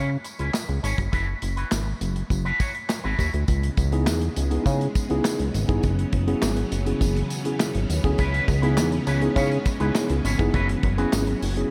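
A fat, detuned analog bass sits up front throughout this excerpt of slick, late-night early-eighties boogie funk in C# minor at 102 BPM. A bright, twangy envelope-filtered guitar riff with subtle chorus opens over a dark, tight-kicked drum kit with handclaps and a jingly tambourine, then drops out as a lush string machine enters at 3.5 seconds, followed shortly by a mellow tine electric piano, before returning at 8.2 seconds. The harmony rocks between C#m7 and F#7sus4, and the whole mix is soaked in a dreamy cathedral reverb.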